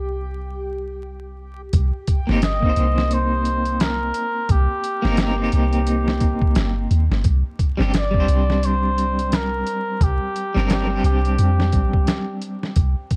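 Cinematic and melancholic, this trip hop excerpt sways with a lazy swing on the sixteenths. It opens on a reversed, dreamy swell of detuned texture alongside a slightly broken-up electric guitar, shimmering with tremolo, and a deep, round 808-style bass that sits up front. At 1.7 seconds a boom bap sampler-style kit arrives with a thumpy kick, a medium-tuned snare and hi-hat, its pitched-down, gritty 12-bit character giving the groove a compressed, tape-softened weight. From 2.4 seconds a cup-muted trumpet carries the melody, veiled and breathy with an intimate, jazz-style voice trailed by tape echo. The dark production keeps the room close and dry, with vinyl crackle adding a worn, vintage patina.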